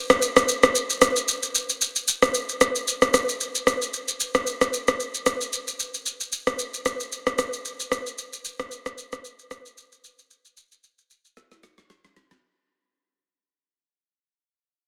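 Late-night and hypnotic, this short amapiano cut from a longer piece moves at 113 BPM in 4/4, with a 55% swing on the sixteenths giving its groove a loose, rolling lilt. The only part is a drum kit of electronic rim click, shaker and snare, which comes in at 0.1 seconds and carries the whole passage. The snare has a woody, overdriven bite, and the kit sits up front with the character of a small room. A moderate plate reverb lends a lingering tail, while the dense, heavily limited master keeps the sound compact and modern. A fade begins at 1.4 seconds, and a drum fill closes out the passage at 11.4 seconds.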